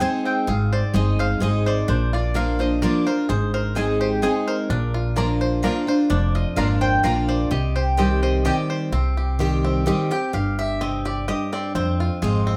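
A full-bodied, picked steel-string acoustic guitar sits up front with a dark pizzicato upright bass in this rustic, lonesome bluegrass piece in 3/4, cut from a longer piece, while a twangy banjo played with fingerpicks adds percussive arpeggios throughout. A warm, double-strung mandolin carries the melody with plate reverb until 8.6 s, and a second, brighter mandolin joins with woody stabs at 3.8 s. A mandolin solo arrives at 8.9 s as the harmony moves from Ab and Bb toward C minor and F minor, all in a moderate studio room.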